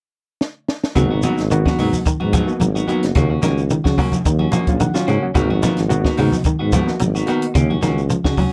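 Intense and defiant, this short afrobeat cut opens with a fill from a compact cocktail drum kit, its high-tuned snare and punchy kick up front, before the full groove lands at 1.0 s over alternating G#m7 and D#m7 chords. A warm tuba with light vibrato carries the bass, while a twangy, scooped electric guitar plays arpeggios and a clean semi-hollow guitar adds hollow-body stabs, joined by thin-skinned, distant congas and a grainy shekere. In the background, a barky, overdriven reed electric piano plays accompaniment through a combo amp and takes a brief fill at 4.5 s, all captured in a dry, close 1970s-style studio sound.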